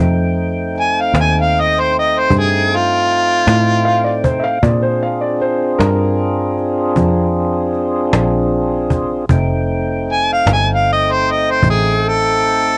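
A fat, clean tonewheel organ holds sustained chords through a slow rotary speaker, with a dark, round fingered electric bass beneath it, carrying a punchy, foam-muted tone and a touch of tube saturation. This is a soulful, laid-back slow blues in 12/8 at 52 BPM in F mixolydian, moving from F7 to Bb7 and back to F7. At 0.8 seconds a clear harmonica takes the solo up front, playing in a jazz style with light vibrato, a soft attack and scooped notes, its sound roughened by overdrive and cassette tape. A woody cajon enters at the same moment, played with soft hands and faint snares and also carrying the cassette tape character. From 3.9 seconds a warm, polished upright piano adds a brief second line before dropping out, while the harmony shifts to Bb7 at 4.6 seconds. The dry home cassette recording has little reverb, and the clip is cut from a longer piece.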